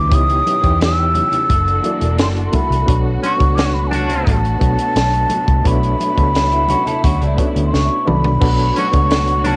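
Lush 1970s-style soul with a smooth, silky mood, cut from a longer piece and captured as a dry home cassette recording, where a breathy, hollow concert flute carries the melody over a gritty electric piano with fast tremolo, background strings, a round, foam-muted electric bass, a compact cocktail drum kit with a punchy kick, dark cymbals and a fill at 7.7 seconds, and ringing background congas, while a vintage horn section adds stabs from 3.2 seconds and a slightly broken-up, lo-fi electric guitar with warbly pitch drift plays a brief riff from 6.5 seconds.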